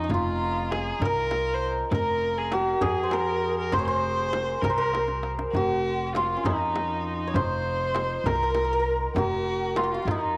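A moderate plate reverb gives this short cut from a longer Persian modal ensemble piece a lingering glow, while the tombak and frame drum sit close and dry in the background. The mood is longing and soulful, moving at 66 BPM in a straight 6/8 within F dastgah shur, tuned to A4 = 439 Hz. Up front, the hammered santur carries the melody with a bright, shimmering ring. Beside it, a single bowed kamancheh plays a smooth, even second line with clear vibrato and portamento. Beneath them the plucked upright bass sounds dark and woody, its steel strings giving a thumpy low end. The tombak adds a deep tone under hard hands alongside the frame drum, and a drum fill arrives at 4.9 s.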